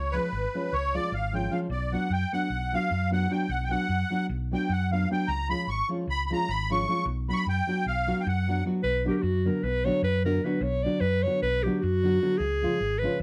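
A driving 9/8 pulse with a straight feel carries this fiery, bittersweet Balkan wedding-band piece, cut from a longer performance. A reedy, shimmering musette accordion sits up front and takes the opening solo, while a round, amped hollow-body electric bass and a full-bodied, thumb-plucked nylon-string guitar hold down the low end and the accompaniment. The harmony sways between C# and Bm, giving the folk tune its restless, minor-tinged color. The accordion drops out at 8.6 seconds, and a mellow clarinet in classical style steps forward at 8.8 seconds to carry the melody, bathed in plate reverb. The whole band sits in a light reverb, with the dark guitar and bass grounding the lead voices.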